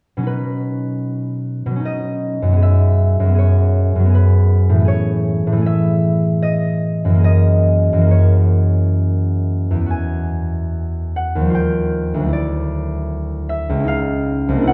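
In a flexible 3/4 with a rubato feel, the tempo drifts between 62 and 81 BPM, giving this short passage from a longer classical work an unhurried, breathing quality. A single concert harp carries the whole piece alone from 0.2 s to 14.7 s, its thumb-plucked strings ringing out across a range from C2 up to G#5. Set in B mixolydian, the harmony moves gently through Badd9, F#11, Amaj7 and F#13 before stepping through Eadd9, D#add9, Dadd9 and C#add9 toward the close. The harp sits up front with an acoustic, warm tone. A dark, warm production and a generous scoring-stage reverb lend the sound a spacious glow. The overall mood is peaceful and graceful.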